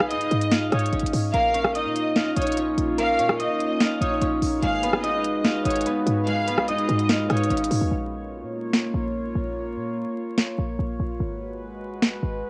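A half-time trap beat at 146 BPM in Bb phrygian drives this brooding, menacing hip hop excerpt, with crisp hats, rim clicks and a sharp snare up front alongside a punchy, tight 808-style bass, and a drum fill at 7.5 seconds leading into a break. A bright, ringing fingerpicked concert harp carries the melody over a distant, lush bowed violin section with vibrato and tape echo that drops out at 7.5 seconds, while a warbly, detuned tape-like pad with chorus enters at 1.7 seconds to hold nostalgic sustained chords moving between Abm, Bbm and Abm7. Cassette tape colouring, vinyl crackle and a small room ambience give the home-recorded mix its lo-fi character.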